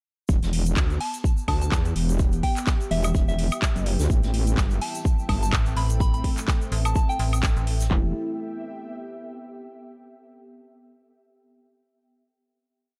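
Swaggering and bouncy, this short bass house piece in E minor runs at 126 BPM with a 16th-note swing, its drop built on a punchy four-on-the-floor kick and clap, a second electronic kit of metallic, tape-colored hats, claps and woodblock, a very quiet acoustic breakbeat of hi-hat and snare, and a grainy, bright egg shaker in sixteenths. An aggressive, saturated metallic wobble bass with chorus and sidechain pumping drives the low end, joined at 5.5 seconds by a mellow, chopped FM bass with tube saturation that answers it. Above, a soft, warbling synth bell with chorus and digital delay plays short phrases, while a deep, moody analog pad enters at 2.9 seconds and an ethereal, airy pad with ensemble chorus and reverb drifts through the Em and Am7 chords before holding the final chord alone until 9.8 seconds, all set in a dark, warm digital ambience.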